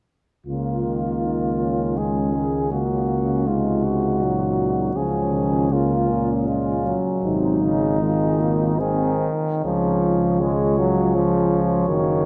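A mellow flugelhorn carries the serene, lyrical melody with light vibrato and a smooth top in this hymn-like classical brass band excerpt in Db major, moving in a rubato 3/4 at roughly 68-83 BPM. Beneath it, a punchy French horn section sings a second line in the background, while a bright trombone and a warm euphonium add accompaniment with light vibrato and an up-front tuba anchors the bass, all five playing from 0.5 to 12.3 seconds. A wet cathedral reverb with a 6.9-second decay surrounds the ensemble as the harmony moves from Db through Gb/Db and Ab7, returning to Db at 9.6 seconds, where a new section begins.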